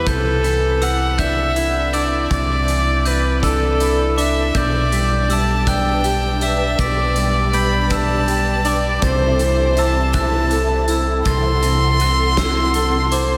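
Post-rock in a slow 6/8 at 54 BPM, brooding and cinematic, where an up-front, nasal violin carries the melody with light vibrato over slightly broken-up lo-fi electric guitar arpeggios, ringing bell-like glockenspiel in the background, a round, dark fingered bass, a big rock kit with a fat snare and punchy kick, and a hollow, flute-like pad that enters at 4.5 seconds, all soaked in a huge dreamy reverb, with tape echo on the violin, guitar and glockenspiel, as the chords move from Cadd9 to G/B to Am/C.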